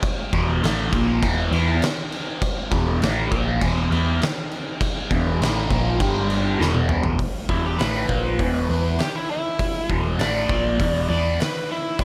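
Raunchy and gritty, this blues rock power trio cut leans into southern rock at a straight 100 BPM in 4/4, taken from a longer piece. An oversized, low-tuned acoustic drum kit sits up front with a punchy kick, fat snare, dark cymbals, hi-hat and toms, its saturated sound pumping in a bright stone room. A crunchy, double-tracked overdriven guitar picks the riff from 0.3 seconds, colored by phaser and moving over E5, G5 and back to E5, while a round, dark hollow-body short-scale electric bass is fingered beneath it. After a drum fill leads into the second section at 7.2 seconds, an overdriven slide guitar with a bright edge, played with fingerpicks, enters at 7.5 seconds and takes a solo in the upper register. Light reverb and small room ambience keep the whole performance close and raw.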